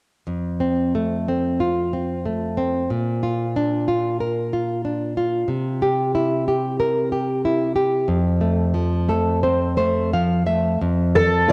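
A lush hall reverb and the soft grain of a home cassette recording frame this short fragment of a fado-style ballad, which feels nostalgic and tender and moves with a free, rubato pulse. A classical nylon-string guitar carries the accompaniment from 0.3 seconds, fingerpicked and up front, with a warm acoustic tone spread across a broad register. Its harmony passes through F, Bb and C before settling back on F, and from 8.8 to 10.8 seconds it plays a fill. Just before the cut, at 11.2 seconds, a fingerpicked twelve-string jumbo acoustic guitar steps forward with a single A4 melody note. That note sounds dark, full-bodied and shimmering, octave-doubled and colored by cassette tape, sitting louder than the nylon-string guitar.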